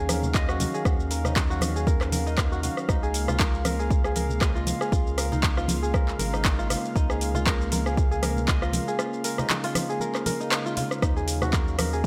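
A detuned sawtooth pad with chorus, ringing fingerpicked kora arpeggios with tape echo, and a round sine sub bass all pump together from the start of this spiritual, hypnotic afro house excerpt at 118 BPM, with a gentle 16th-note swing and chords moving from Ebm9 to Db6 and back. An up-front, overdriven afro-pop kit of handclaps, metallic hi-hats, rim clicks and shaker arrives with congas sitting in the background, and a deep, layered, overdriven electronic kick lands at 0.3 seconds as the loudest element. The mix is dry, keeping the crisp kora and the mellow pad close and clear.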